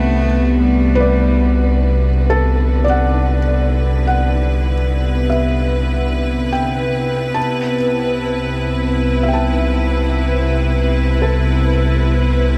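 Bathed in a huge, wet reverb that suggests a vast, echoing space, this luminous, peaceful ambient piece opens with a brief nasal, earthy cello line that stops at 1.9 seconds, while a clear, biting string section fades in on sustained chords, a soft felt-muted upright piano with audible action noise plays arpeggios through shimmer reverb and tape echo, a round, deep analog bass sits up front, and a tense, string-like drone sustains throughout.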